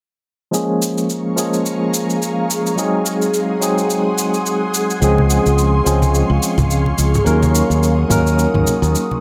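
A moderate digital room reverb frames this relaxed, wistful sunset chillout excerpt in Bb minor at 107 BPM with a 16th-note swing, where a barky, up-front tine electric piano with tremolo, delay and a filter sweep comps through Bbm7, Ab7, Dbmaj7 and Ebm7 beneath an ethereal, detuned pad thickened by chorus and phaser, an overdriven electronic cabasa ticks along, and a bright, punchy fingered electric bass and soft, dry congas join at 5.0 and 5.2 seconds before a break at 8.9 seconds.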